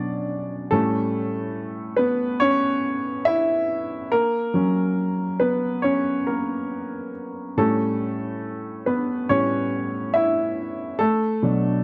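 Melancholic and longing, this short pop piano excerpt at 70 BPM in a straight 4/4 features a warm, natural baby grand playing solo from A2 to E5, up front with a slapback echo and light reverb in a dry, close 1970s-style studio sound, moving through Bmadd9, A7 and F# before settling on Bm at 11.0 seconds.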